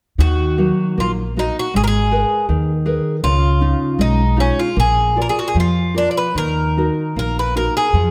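A metallic, up-front Irish bouzouki carries the melody on picked double strings in this passionate, longing fado-style ballad, which moves in a rubato 2/4 and is cut from a longer piece. A fingerpicked classical nylon-string guitar supplies warm accompaniment while a woody pizzicato upright bass sits close beneath, all three sounding together from 0.2 to 8.1 seconds. The chords travel from Ebm through Abmadd9, Dbadd9 and Bb before returning to Ebm, all framed by a moderate recital hall reverb.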